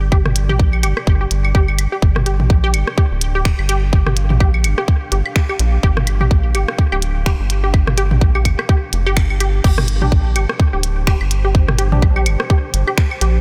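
A tight, up-front kick drives this sparse, quirky minimal techno excerpt at 126 BPM in 4/4, with a 57% swing on the 16ths. Clicky hi-hats, finger snaps and crash cymbal from one kit sit alongside layered claves, rim clicks and toms from another, the latter trailing analog delay. A rubbery, nasal square bass pumps in G minor under a juicy, squelchy blip pluck on G4 with chorus and delay, while an ethereal, airy pad with tremolo and ensemble chorus fades in the background, and a very quiet, hollow organ stab appears only from 10.0 to 12.0 seconds.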